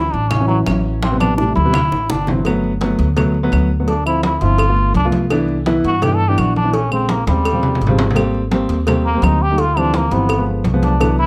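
Closely miked and lightly reverberant, this lively, sunny Afro-Cuban jazz passage at 168 BPM in 4/4 features a buzzy, brilliant trombone in a metal mute soloing up front over a dark, mellow grand piano, a thumpy, woody pizzicato upright bass, ringing vintage congas, round low-tuned bongos and cowbell in the background, and close, dry claves, with drum fills at 1.0 and 7.3 seconds and jazz chords such as Gmaj9, Cmaj7 and Abmaj9.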